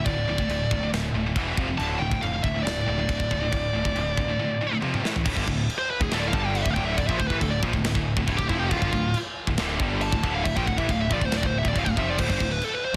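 A straight 4/4 pulse at 138 BPM drives this dark, aggressive heavy metal excerpt in D minor, where a tight, up-front drum kit with a tight kick, medium-tuned snare, china and crash cymbals and toms rolls through a fill at 4.8 seconds into a lead guitar solo at 5.3 seconds. Two bright, high-gain rhythm guitars pick out a low riff in the background alongside a growly, overdriven picked bass. On top, a warm, distorted lead guitar carries the melody with delay, all sitting in a small room ambience under a dense, heavily limited modern master.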